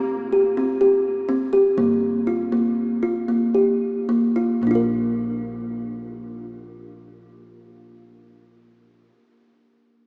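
A mellow kalimba, close and up front with a hollow, boxy fingertip pluck, opens this playful, restless fragment of contemporary chamber music, spinning short arpeggios over a faint, dark pizzicato upright bass with steel strings. Set in 11/8 in Bb major at a brisk 214-251 BPM counted in eighths, the pulse slows from 0.6 to 4.6 seconds as the harmony moves from Fsus2 to Gm7, then settles on Bb for a second section. A vast, echoing cathedral reverb surrounds the small-speaker sound until both parts stop just past 9 seconds.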